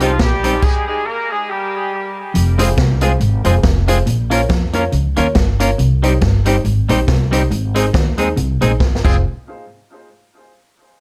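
Ska with an energetic, driving swing, cut from a longer piece, in which a tight, vintage horn section in octave doubling carries the melody through dub echo from the start until 2.2 seconds, with a stop arriving at 0.6 seconds. A twangy, picked clean electric guitar and a mellow upright piano playing stabs through dub echo sit over a woody, growly pizzicato upright bass and a punchy, up-front big-band drum kit of crash, hi-hat, kick and snare. In the background a dark, fingered semi-hollow guitar plays a riff through spring reverb and dub echo, and a drum fill lands at 8.8 seconds, the whole set in a light room reverb.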